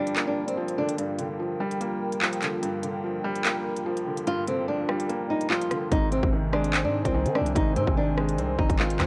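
A dry, gritty cassette-tape sound frames this dark, tense half-time drill excerpt at 146 BPM in G phrygian, where a fingerpicked flamenco guitar melody with a low-pass filter drops out after 0.9 seconds and returns at 4.3 seconds over a soft felt-muted upright piano with audible action noise, a detuned, wave-folded analog pad with chorus sitting in the background on Gm7, and an up-front electronic drill kit of hard-clipped kick, crisp hi-hats, handclaps and rim clicks, until a growling, buzzy 808-style bass enters at 5.9 seconds as the harmony moves to Ab.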